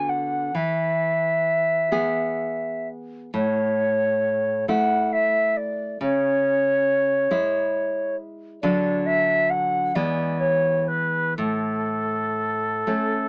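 Rubato in a lilting 6/8, this romantic duo drifts at roughly 40-47 BPM counted in dotted quarters, its pulse bending freely around a lyrical, warm mood in A major, tuned slightly low at A4 = 435 Hz. A silver concert flute carries the melody between A4 and G#5 for the full 13.3 seconds, its pure, straight tone and crisp attack sitting up front yet carrying a faintly distant, expressive quality. Beneath it, a nylon-string classical guitar provides fingerpicked accompaniment from A2 to G#4, sounding deep, acoustic and warm, and a little lower in the balance than the flute. The harmony moves from an opening Bm/D through E to A, then on to C#m, D and E before settling back on A. Light reverb and a small-speaker sound give the passage an intimate, slightly boxed-in character, and it is heard as a short portion cut from a longer piece.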